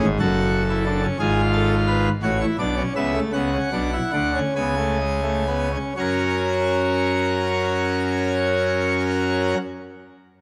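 A solo full pipe organ opens this serious, driving baroque-style three-part fugue in 6/8, sitting up front with majestic, brilliant mixtures, audible chiff and baroque voicing across a range of F#1 to G#5, slowing from 0.2 seconds into a new section at 6.0 seconds before the organ stops at 9.6 seconds, all heard through close, detailed microphones in a moderate stage reverb as a fragment of a longer piece.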